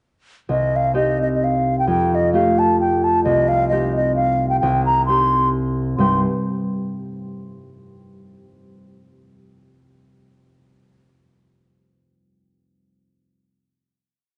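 At 0.5 s a baroque flute and a concert harp begin together in a spirited, driving Celtic waltz in C dorian at 131 BPM in 3/4 with a light swing. The woody, pure-toned flute sits up front with vibrato and tongued notes, spinning a motif-based melody in period phrases, while the ringing, thumb-plucked harp supplies bass notes and chord figures that carry the pulse through Cm, Fadd9 and back to Cm. Both parts stop at 6.2 s, letting the final chord hang in a moderate recital hall reverb within a dark, warm production.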